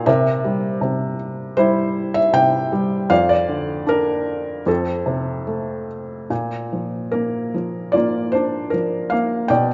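A moderate concert-hall reverb and a softened top end frame this short, peaceful passage of lyrical classical solo piano in Bb major, cut from a longer piece. A felt-muted upright piano sits close and intimate, its mellow, short-sustained tone carrying audible action noise as it moves with loose rubato around 76 BPM in 4/4, ranging from F2 to G5. The harmony opens on C7, passes through Bb/F at 3.1 seconds and F at 4.7 seconds, then settles onto Bb at 6.3 seconds for the closing phrase.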